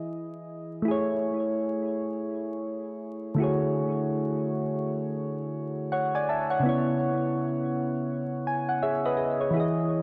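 Dreamy and nostalgic, this short hip hop fragment drifts at 83 BPM in 4/4, with a gentle swing on the sixteenths. A soft, electric-piano-like synth keys part plays alone, sitting up front with a round, mellow tone and a fast attack that decays gently. Chorus, cassette tape coloring, a low-pass filter and delay give the keys a warbling, vintage character, while a filter sweep keeps the sound evolving. The harmony moves from Emaj7 to Amaj7, then to Dmaj9#11 and C#m7, and the keys add a brief fill at 8.1 seconds. A moderate plate reverb soaks the mix, and vinyl crackle adds a nostalgic haze.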